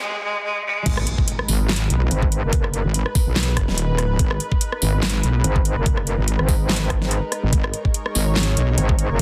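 At 144 BPM in a swung, half-time 4/4, this heavy, chaotic wobble dubstep excerpt in G# minor opens with a brief, rich bowed cello line and a background riser before the drop lands at 0.9 seconds, where a knocking, tape-warm kick, a huge snare with metallic hats, handclaps, rim clicks and crash, and a saturated, detuned wobble bass on a G#madd9 chord drive forward under a lush, phased unison pad, while an aggressive FM wobble bass cuts in briefly and returns from 5.4 seconds.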